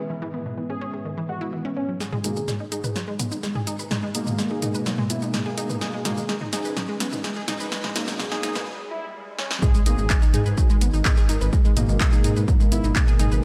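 A moody, chorused analog pad, round detuned pluck arpeggios with analog delay, and a brief swarming, granular drone open this melancholic, hypnotic melodic techno excerpt in G# minor at 126 BPM; a bright, wave-folded unison lead with lush chorus, cassette-tape colour and vibrato soon carries the melody, and at 2.0 s a punchy techno kit with handclaps, shaker and toms arrives, joined at 2.2 s by fat, brassy synth stabs and a deep, rumbling detuned saw bass, the synths pumping under sidechain as a very quiet riser and swell build through a break to the drop at 9.6 s, where a heavy, up-front electronic kick lands in a dreamy, reverb-soaked hall.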